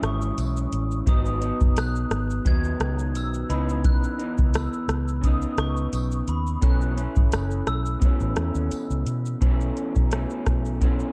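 The production is dark and warm, with little reverb, giving this cut from a longer indie pop and bedroom pop piece a lonely, mellow feel at 86 BPM in 4/4, with a light swing on the sixteenths. A soft vintage rhythm box sits up front with a deep kick, metallic hats, rim click and shaker, all dry and tape-warm. A muted fingered electric bass sounds round, punchy and foam-muted alongside it, while an electric guitar played through a small old amp adds slightly broken-up, lo-fi picked accompaniment with analog chorus and a warbly pitch drift. Above them a glockenspiel struck with hard plastic mallets carries the melody in a bell-like, ringing and smooth tone, thickened by ensemble chorus, until it drops out at 9.0 seconds. A jingly, band-limited tambourine joins quietly in the background at 0.4 seconds as the harmony moves from Amaj7 through G#m7 and C#m9 to B9sus4.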